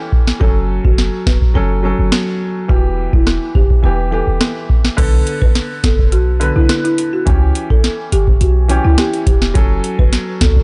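A clear, worn grand piano with sidechain pumping opens this sultry, bouncy dancehall excerpt, joined almost at once by an up-front, booming analog drum machine with a deep kick, crisp snare, metallic hats, rim clicks and crash, and then at 0.4 seconds by a woody, rustic marimba melody played with soft mallets through tape echo and a clean, sine-like 808-style bass, in a dark production with little reverb as the chords move from F#m through Em, Bm7 and C#dim back to F#m.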